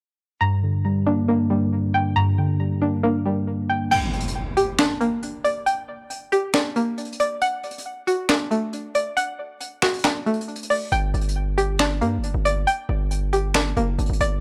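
A half-time trap groove in 4/4 drives this brooding, hard-hitting hip hop clip: soft, muted felt-like synth keys with chorus and phaser open beside a twangy, bright string-like resonator pluck playing arpeggios through analog delay, then at 3.9 s the keys stop as an electronic impact lands and an airy jazz brush drum kit with a high-tuned snare, dark cymbals, hi-hat and finger snaps enters, before a heavy, aggressive distorted 808-style bass arrives up front at 10.9 s, the mix sitting in a small room with a dry, gritty hardware character and transformer saturation.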